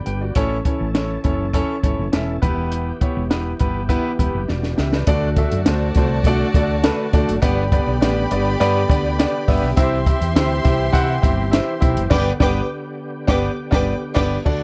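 A clear, intimate baby grand piano with long sustain and a gritty, overdriven tonewheel organ on a slow rotary speaker, sitting very quietly beneath, open this joyful, danceable slice of uptempo 1960s-style soul at 102 BPM. They are joined almost at once by a growly, round fretless bass and a compact cocktail drum kit with a high-tuned snare and punchy kick. After a drum fill at 4.5 seconds, a softly bowed studio string section with light vibrato enters at 5.1 seconds to carry a second line over chords moving through D, G and C, and the band lands a shared accent from 12.1 seconds, all within a dark, warm production with light reverb.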